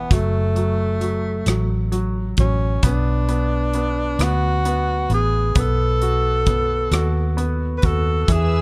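A dark, warm small-room sound frames this brief cut from a melancholic, aching pop ballad in six-eight, moving through F#m, Bm and then B. Up front, a breathy tenor saxophone carries the melody with vibrato, scooped notes and a jazz inflection. Beneath it sit a clear, polished grand piano with deep bass and short sustain, a round, foam-muted vintage electric bass, and an acoustic drum kit with a tight kick, hi-hat and rim click, and at 8.3 seconds a bowed studio string section enters on sustained chords with expressive portamento and a smooth top.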